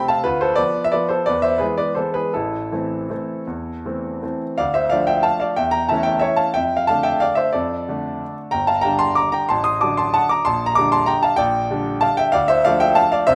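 A clear, intimate baby grand piano plays alone from the start in this nostalgic, bittersweet classical waltz in 3/4, moving with rubato at roughly 153-200 BPM from A minor into D minor at 4.6 seconds, its up-front, natural tone carrying audible action noise within a moderate recital hall reverb across a short passage cut from a longer piece.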